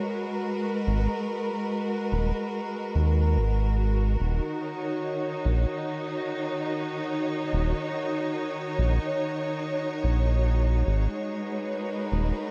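A round, deep analog bass sits up front in this hazy, spacious ambient dub fragment, entering at 0.9 s with a dark, sawtooth-and-sine tone, a fast attack and long sustained notes in a low register. Alongside it, a clear symphonic string section holds sustained chords from the very start, its bowed ensemble sound smooth, even and lush, with vibrato. The harmony moves from G#m9 to D#m7 and back to G#m9 near 10.9 s, giving the passage a slow, floating drift in 4/4 with a light swing on the sixteenths. Light reverb and a small room ambience add a soft sense of space. Cut from a longer piece, the passage feels like a suspended moment, with the bass carrying the weight and the strings providing a lush cushion.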